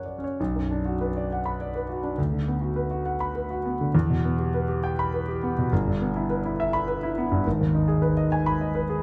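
In a three-beat metre stretched and pulled by rubato, this brief passage from a longer romantic character piece feels bittersweet with a stormy undercurrent. A single concert grand piano carries everything across its nine seconds, reaching from a deep, resonant G1 in the bass up to B5. Its tone is warm and natural, captured close and up front so that the intimate detail of the instrument's action noise is audible beneath the notes. The harmony settles on B minor and its first inversion before moving to E minor and its inversion, then turns unexpectedly to A-flat minor at 7.5 seconds. A moderate, large studio reverb adds a sense of space around the closely detailed sound.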